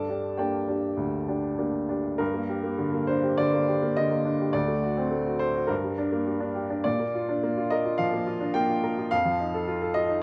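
Passionate and lyrical, this short cut from a longer romantic character piece for solo upright piano unfolds with flexible rubato across a brief opening passage and a longer second idea, the instrument sounding clear, woody and vintage, with long sustain, up front and close in a light reverb as it moves through minor harmonies and dominant-seventh chords before breaking off at 10.2 seconds.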